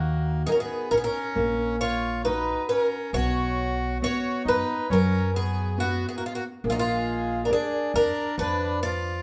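Heard through a wet, large studio reverb with the band playing live in one room, this mournful, passionate fado-style ballad unfolds in a free, rubato 4/4, cut from a longer piece. Up front, a picked twelve-string acoustic guitar carries the melody with a shimmering, octave-doubled, boxy tone from old strings and a touch of swing, while a reedy, mid-forward accordion sings a second line beneath it. A full-bodied, fingerpicked nylon-string guitar with a deep classical character and a dark, thumpy pizzicato upright bass on gut strings support the harmony as it moves from Ebm to Bsus2 at 3.1 seconds and Bb7 at 6.6 seconds.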